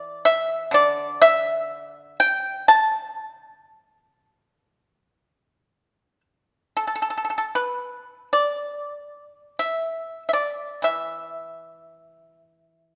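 Elegant and pastoral, this brief fragment of Chinese traditional music unfolds at a slow, rubato 55-63 BPM in 4/4, tuned slightly low to A4 = 438 Hz. A solo acoustic pipa, played with fingerpicks, carries the whole 13 seconds, ranging from D3 to A5 with a bright, percussive, up-front tone that stays dry and close. A moderate scoring-stage reverb gives the room a gentle sense of space, and the music moves into a new section at 6.8 seconds.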